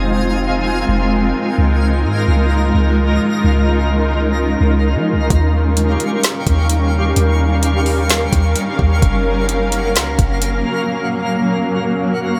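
Set at 129 BPM in 4/4 with a half-time feel, this atmospheric cloud-rap passage, cut from a longer piece, floats in an ethereal, hazy mood over a chord sequence of Fm7, Db69, Eb9 and Gbmaj7. A granular cloud pad sits up front, holding sustained chords with a blurred, detuned, full-bodied sound, slow attack and long release, soaked in its own reverb and pumping from sidechain compression. Beneath it, a soft 808-style bass plays deep, round, sine-like notes with a fast attack and dark decay until 10.6 seconds. Higher up, a twinkling granular texture adds sparkling FM tones with an octave-up shimmer, set lower in the mix and bathed in reverb. A smooth, electronic R&B drum kit enters at 5.3 seconds with a soft kick, a woody snare and metallic hats, sounding re-recorded in a small room, and stops at 10.5 seconds, while light reverb gives the whole a gentle sense of space.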